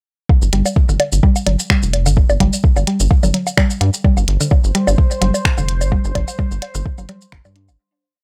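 A dry, gritty hardware recording with little reverb opens this short, complete minimal techno piece, cool and clinical in mood, with a light swing on the sixteenths. A soft, tape-warm electronic kick sits up front in a four-on-the-floor pulse, joined by a clicky programmed kit of closed hats, shaker and finger snaps carrying the backbeat, while woodblock, bongos and congas add dry clicks and blips in cross rhythm through a tape echo. A rubbery, hollow square bass rolls in bouncy staccato figures, pumping against the kick, and a woody, round mallet-like synth pluck repeats a 10-step sequence that drifts against the bar, colored by chorus and analog delay. At 4.0 seconds a bubbling, resonant sawtooth texture enters quietly, holding a high note behind random filter steps with a soft attack and long release. The whole track plays as a single drop, fading out from 5.3 seconds to the end at 7.8 seconds.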